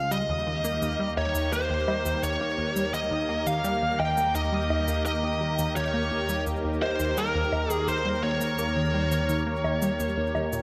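A bluesy, overdriven electric lead guitar carries the melody up front with distortion and delay, over a swirling, airy phased analog pad holding sustained chords around Eb, a tight, driving sequenced sawtooth synth riff with chorus, phaser and delay, and electronic cabasa and woodblock entering at 0.1 seconds, all bathed in a wet plate reverb in this expansive, luminous excerpt of ambient, sequencer-driven space music at 85 BPM.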